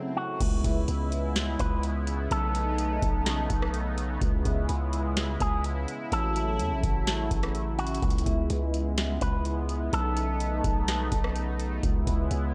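A digital ambience wraps this hazy, ethereal cloud-rap excerpt in C# minor, moving at 126 BPM with a half-time feel over a C#m7, B9 and A6 progression. A detuned, resonant sawtooth pad with chorus and sidechain pumping opens alongside a dark, clean, fingered electric guitar through an envelope filter, spring reverb and digital delay. At 0.4 seconds a deep, sine-toned 808 bass and a booming analog drum machine with crisp snare, metallic hats and 12-bit sampler grit arrive up front, and the guitar drops out at 11.8 seconds.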